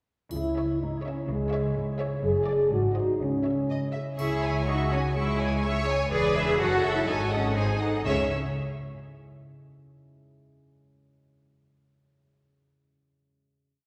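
A mellow French horn section plays sustained chords at the start of this sneaky, mischievous film cue before dropping out at 3.9 s, all heard from further back on a reverberant scoring stage. In C# minor at 124 BPM in 2/4, a concert harp rings out broken-chord arpeggios, lush symphonic cellos and a focused chamber double bass section carry the bass in bowed and pizzicato strokes, and violas and a second violin section add a rocking two-note figure and a counter-melody, while a triangle sits in the background. A rich chamber violin section carries the playful, whimsical melody through two matching passages that settle on a final C# minor chord at 8.1 s.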